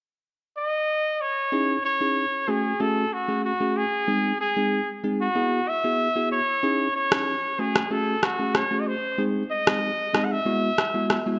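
A straight 4/4 pulse at 94 BPM sets a hypnotic, smooth afrobeats groove in C# minor, tuned to A4 = 436 Hz, in this excerpt cut from a longer piece. A clear, punchy trumpet with vibrato enters at 0.6 seconds and carries the pop-style solo melody between F#4 and F#5, its vintage tone up front and trailed by delay. At 1.5 seconds a bell-like tine electric piano joins with clean accompaniment from G#3 to G#4, sounding as if heard through built-in speakers, moving through C#madd9, F#madd9, G# and Eadd9. An electronic rim click arrives at 7.1 seconds, layered and tape-tinged with the character of a small room, sitting up front as the only percussion. Moderate plate reverb and a bright 1980s-style digital production give the piece a glossy, spacious finish.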